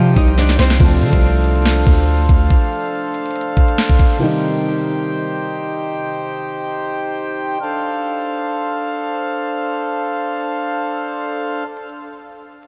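A half-time drill groove from a produced electronic kit, with knocking kick, sharp snare and crisp hats, drives from 0.2 to 4.2 seconds over a sine-toned 808-style bass with a fast attack and long decay, while a full-bodied, fingerpicked nylon-string guitar with subtle chorus and tape echo states a brief classical melody, a mellow, boxy baby grand piano carries the accompaniment until 7.6 seconds, and an up-front principal pipe organ with smooth baroque voicing and audible chiff sustains chords through 11.6 seconds, the whole mix soaked in huge, dreamy reverb and vinyl crackle that make this menacing, dark hip hop fragment feel haunted.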